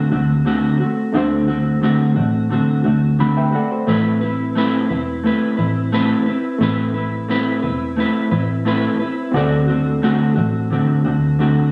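A hazy, phone-captured room sound wraps this short cut from a longer piece in light, club-like reverb, digital ambience and compression. It is sunny, mellow indie and bedroom pop in a straight 4/4, resting on a D7 chord before moving to Amadd9 and returning to D7 at 9.3 seconds. Up front, a dark, clean electric guitar played with the fingers carries the accompaniment, its tone made lush by chorus and a vibrato effect. Beneath it, a vintage picked electric bass sits low, round and amped, its foam-muted notes giving a soft, rounded bottom. Further back, a reedy, worn electric piano heard through its built-in speakers adds faintly out-of-tune colour and plays a brief fill from 2.9 to 3.9 seconds.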